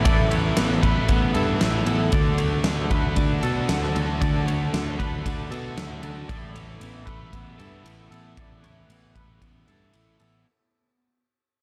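A brassy, detuned analog pad holding soft-attack chords in the background, twangy clean guitar arpeggios bathed in lush chorus and analog delay, a biting overdriven guitar riff, a hollow-bodied overdriven guitar riff with reverse reverb, and a growly picked bass all open this dreamy, wistful shoegaze and dream pop excerpt at 115 BPM in 4/4. A huge arena drum kit joins at 0.1 s, up front, with a fat snare, punchy kick and bright ride cymbal. The parts move through Asus2 and D under a dark, small-room production, and the whole passage fades out across its 10.5 seconds.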